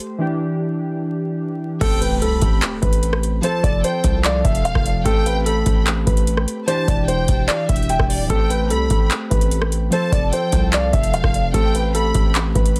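Brooding and hard-hitting, this half-time trap excerpt in A minor at 148 BPM opens with warbling, detuned lo-fi synth keys, chorused and low-pass filtered, playing alone over a minor-seventh chord before the full beat drops at 1.8 seconds. A dark, mellow concert grand piano carries the melody through a low-pass filter and digital delay, while a distant, lush bowed violin section adds an expressive second line with vibrato and its own delay, and a very quiet electronic impact marks the drop. Underneath, a punchy, heavy 808-style bass anchors the low end, and a booming, tape-warm analog drum machine with deep kick, metallic hats, handclaps, rim clicks and crash sits up front in a dry, dense, heavily limited mix dusted with vinyl crackle.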